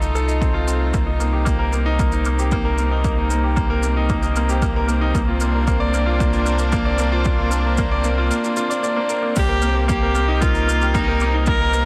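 A bright concert grand piano leads this short, cinematic piece of piano and strings electronica, playing a brilliant, up-front riff through tape echo over a melancholic progression in C dorian at 114 BPM in a straight 4/4. Beneath it, a round sine sub bass holds a deep C with tube saturation and sidechain pumping. A rich chamber string section sustains earthy, lightly vibrato chords in the background, also pumping against the beat. An overdriven, punchy electronic kick enters at 0.4 seconds, while a shaker and crash cymbal add airy, dark brushwork. At 9.4 seconds a single clear, intense viola takes up the melody with vibrato and tape echo as the harmony returns to Cm7, all set in a light small-room reverb.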